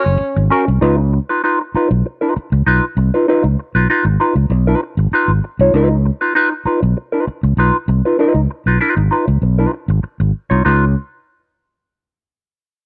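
A straight 4/4 funk groove at 98 BPM in Db mixolydian struts along as a punchy, growly fingered electric bass and a dark, clean electric guitar with wah play up front through light small-room reverb, while a raspy alto saxophone growls a brief opening note that ends at 0.5 seconds, and the chords move from Ab9sus4 to Db9 in this excerpt cut from a longer piece.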